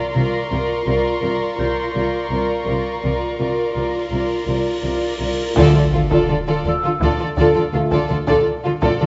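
Ominous and mysterious, this 83 BPM suspense film-score fragment in 5/4 sets a dark violin melody over warm violin and viola lines, a second high violin texture until 5.2 s, dark cellos, clear double basses and an airy, bell-like celesta. A huge, bright cymbal swell from 3.8 s then builds to a D minor arrival at 5.6 s, where hard-stick taiko enter just after background French horns come in at 5.5 s, all bathed in scoring-stage reverb and worn, warbling cassette tape.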